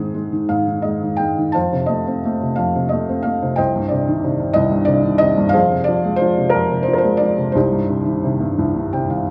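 Swaying in a lilting six-eight, the rhythm moves in uneven beats with a free, rubato give and take that keeps the pulse breathing. This is lyrical classical solo piano, dark and wistful in mood, in a short 9.3-second passage cut from a longer piece. A felt-muted upright piano carries everything alone, its tone soft, mellow and intimate, placed up front and close. The harmony drifts from Ab to F, settles on Cm, moves to Fm and returns to Cm, while the playing spans from deep bass notes to the upper middle of the keyboard. A brief fill on the felt piano arrives at 8.6 seconds, closing the passage. A moderate concert hall reverb lends the hushed sound a gentle sense of space.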